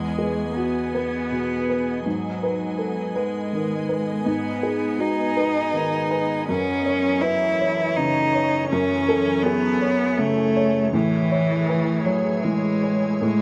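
In a rubato 3/4 at 81 BPM, this hopeful, intimate neoclassical excerpt pairs a rich, bowed cello singing a smooth second line with vibrato and a dark, woody upright piano whose worn, slightly detuned tone and audible action noise sit up front, while a soft organ-like pad with ensemble chorus and built-in reverb holds calm sustained chords through Emaj7, G#m7, F#m7 and Amaj7, all in a light reverb.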